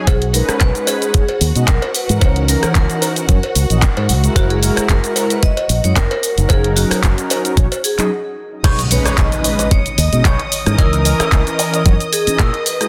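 Sleek and cosmic, this nu-disco excerpt moves at 112 BPM in 4/4 with a light swing on the sixteenths, built over a chord cycle that opens on B69 and C#m69 before reaching F#9 and D#m7/F#. A gritty, thumpy electronic kick sits up front, joined by a layered pop kit of hi-hat, rim click, shaker, handclaps and crash, while a cowbell ticks in the background until 7.8 seconds. A punchy fingered electric bass with an envelope filter drives the low end, and a round, detuned synth brass with chorus and sidechain pumping carries the accompaniment, backed by a lush bowed string section tinged with vintage sampler grit. Over this, a ringing vibraphone played with hard mallets sings the melody through analog delay, its fast motor vibrato adding a shimmer. After a brief stop, the drop lands at 8.6 seconds with a background electronic impact and a twangy, clean picked guitar riff through an envelope filter and lush chorus. 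The mix carries light reverb and a dense, heavily limited modern master.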